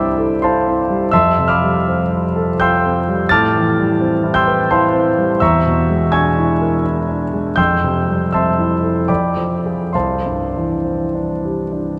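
Impressionist classical solo piano in 3/4, drifting with rubato between 66 and 88 BPM, with a serene, hazy mood in this short fragment cut from a longer piece. A concert grand sits up front with an intimate, polished tone, deep bass and long sustain, its action noise audible as it ranges from C2 to A6 through lush chords like Am9, E7#11 and Fmaj9 before settling on Cadd9. The piano rings out in a vast cathedral, the wet reverb trailing for 5.6 seconds.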